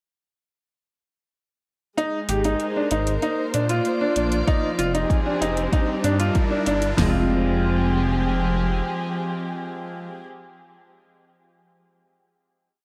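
Hypnotic and intimate, this short piano and strings electronica piece rides a bright, brilliant grand piano ostinato with tape echo over close, sul tasto chamber strings whose slowly shifting chords pump against a dark, rumbling detuned saw bass playing off the beat. A metallic, overdriven electronic hi-hat keeps a restrained pulse from 2.0 seconds, a very quiet riser rises beneath the build, and at 4.5 seconds a punchy deep house kit with a deep four-on-the-floor kick, snare and toms joins up front. The build gives way at 7.0 seconds to a final F minor chord held by piano and strings in a light reverb.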